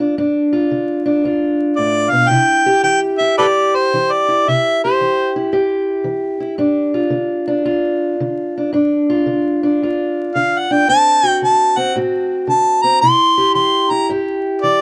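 Soulful and gritty, this short cut from a longer acoustic country blues piece rolls along in a swung 4/4 feel. A fingerpicked steel-string parlour guitar carries the accompaniment throughout, its dark, boxy tone sitting up front as it moves through G7, C, G5 and D7 before settling back on C. A mellow harmonica takes the melody as a jazz-tinged solo voice, entering at 1.8 seconds, falling away, then returning at 10.4 seconds to play through to the cut. Its playing is marked by light vibrato, tongue slaps and scooped notes, with a smooth top end that sits a touch louder than the guitar. The sound is dry and close in a small room, like a 1970s studio session, with vinyl crackle adding a worn patina.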